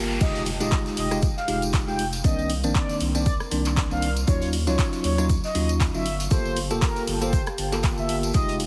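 Heavily compressed like a radio broadcast and dusted with vinyl crackle, this late-night deep house excerpt sits in a light studio reverb and feels smooth and swung. An electronic riser opens at 0.0 seconds, and the drop lands at 0.2 seconds with an impact that rings until 2.2 seconds, as a deep, up-front layered kick, a produced deep house kit of crash, handclaps, hi-hat and rim click, and a very quiet vintage acoustic kit of hi-hat, shaker and a medium-tuned snare with a rolled-off top all come in. A jingly tambourine from a live room adds sparkle, while a round analog bass with a fast attack pumps under the sidechain beneath a moody, warbling pad with chorus and built-in reverb that hangs in the background. Bell-like tine electric piano stabs ring out bright, clean and direct, and a mellow, horn-like synth lead with chorus, vibrato, a filter sweep and digital delay carries the melody. 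The harmony moves through Fm9, Cm9, Ebm9 and Gm9.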